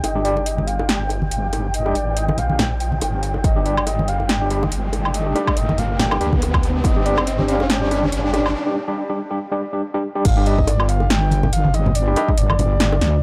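A heavy, detuned wobble bass sits up front throughout this dark, cavernous deep dubstep excerpt, its saturated sawtooth growl thickened with chorus under a half-time, swung groove. Above it a soft, breathy flute-like synth lead carries the melody with vibrato, chorus and dub echo while a filter sweep works on it through the build-up, and a barky overdriven tine electric piano adds gritty stabs with fast tremolo and dub echo. An overdriven deep house kit with a punchy snare, metallic hats, crash and woodblock plays alongside close, acoustic bongos and congas. A riser climbs while a flickering, grainy texture sustains in the background, both ending at 8.5 seconds and giving way to a short break before the drop at 10.3 seconds, where the deep, overdriven electronic kick returns after an earlier run from 3.4 to 6.9 seconds. The dry, gritty hardware sound keeps the whole mix close and raw.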